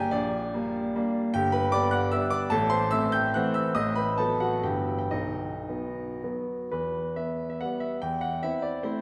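A solo baby grand piano, warm and natural with long sustain and placed up front, opens this wistful, nostalgic fragment of a romantic classical triple-time dance in E minor, whose dotted rhythms sway in 3/4 with free rubato between 102 and 163 BPM, its chords drifting from G minor through A minor and a B7 toward E minor by 6.7 seconds, all bathed in the long, wet reverb of a church.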